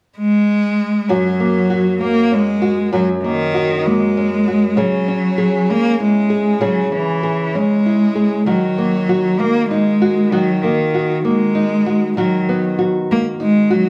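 Tender and swaying, this pop excerpt moves at 65 BPM in a straight 6/8, counted in dotted quarters, and sits in F# mixolydian. A single bowed cello carries the melody from 0.2 seconds, its clear, smooth and even tone shaded with vibrato and kept up front in a compact range from D#3 to A#3. At 1.1 seconds a fingerpicked nylon-string guitar joins as accompaniment, its small, dark acoustic sound also placed close, spanning F#2 to G#4. The harmony moves from F# through C#m and D#m before settling on B/D#. The two players sound as if performing live together in one large studio, wrapped in a wet reverb with a 1.2-second decay that gives the intimate duet a sense of space.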